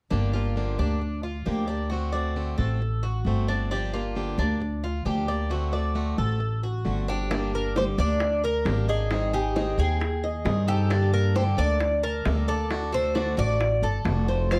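Dry and closely miked with fine detail, this sultry Cuban son and guajira excerpt opens on a woody, thumpy pizzicato upright bass sitting up front, a boxy picked acoustic guitar in swing style comping underneath, and a metallic, double-strung tres spinning out prominent arpeggios. A second tres takes up a picked melody at 7.1 seconds, its paired strings warm and metallic, some of them doubled at the octave. Round, low-tuned bongos played with soft hands join at 7.3 seconds with a vintage, band-limited tone as the harmony moves off its minor-seventh vamp into richer chords.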